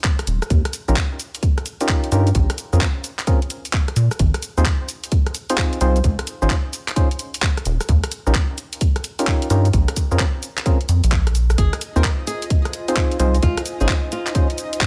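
Swung two-step UK garage at 130 BPM in Ab major, this soulful, bouncy excerpt rides a tight, up-front electronic kick and a garage kit of bright hats, cabasa, handclaps and rim clicks under a rubbery, dark square bass and mellow organ stabs with chorus and dub echo, cycling Eb9, Bbm9, Ab6 and Dbmaj9 until a fingerpicked flamenco guitar with digital delay enters at 11.6 seconds, joined by an airy, breathy pad and a warbling, nostalgic lo-fi pad, both pumping in the background.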